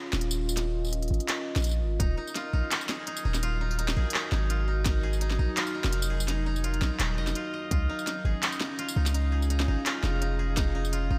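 A deep, moody pad of detuned sawtooth voices with a sub octave opens this spacious, dark half-time drum and bass excerpt, its slow-attack chords wrapped in chorus and built-in reverb and moving with sidechain pumping. Almost at once a long, sine-toned 808-style bass arrives up front, mellow under tube saturation, alongside an organic electronic kit of handclaps, woody snare, crisp hi-hat and tambourine that sounds tape-warm and re-recorded in a small room. At 2.0 seconds a bright, dry koto enters with arpeggios played with fingerpicks, trailed by a diffuse ambient delay, and a hard-clipped electronic kick lands at the same moment. The kick strikes only sparingly from there, while the harmony moves from Db to Ebm and back to Db at 7.7 seconds. A light reverb colours the mix, and a slight swing on the sixteenths shapes the half-time groove.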